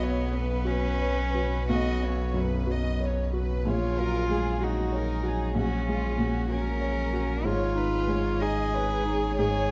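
Neoclassical piano and strings in F# major, this intimate, tender fragment moves at a rubato 62 BPM in 6/8 through Bsus2, F#add9/A# and C#add9/G#. A felt-muted upright piano gives soft, mellow accompaniment beneath a chamber violin section carrying the melody with light vibrato and sul tasto bowing, while a close solo cello with an airy bow sits up front on the second line. A very quiet, dark string ensemble holds sustained chords, and a deep, punchy sine sub bass with a pitch-drop attack anchors the low end, all in light reverb.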